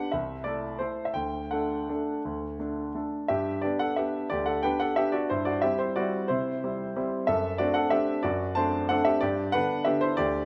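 Graceful and elegant, this short excerpt of a classical piano waltz in G major moves in a rubato 3/4 at around 159-194 BPM, with a solo grand piano that sounds clear, present and up front, ranging from deep bass to bright upper register across about 10.5 seconds, its chords settling into G major by 3.3 seconds and closing back on G, all framed by the moderate reverb of a recital hall.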